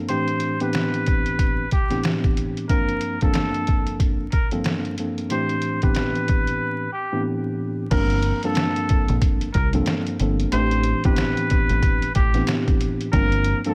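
Boom-bap hip-hop with a gritty, tough, swung feel, cut from a longer piece: a worn, slightly out-of-tune tine electric piano sits up front over muffled, pitched-down sampler drums with a thumpy kick, while a distant, nasal straight-muted trumpet adds breathy jazz phrases with scooped notes and light vibrato, and after a break at 6.6 seconds a dark, round, punchy fingered bass enters at 7.9 seconds, all under a layer of vinyl crackle and light reverb.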